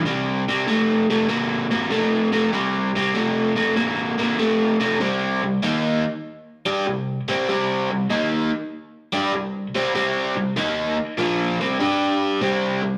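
A lone overdriven electric guitar opens on a C5 chord, bright, picked and double-tracked, compressed and placed up front in a heavy, brooding rock passage in C minor at 97 BPM with a swung eighth-note feel. At 5.0 seconds it moves to C minor, then reaches G5 at 11.8 seconds before returning to C5 as this 13-second cut from a longer piece ends. The sound is a rough rehearsal-room take, bathed in the reverb of a stone room.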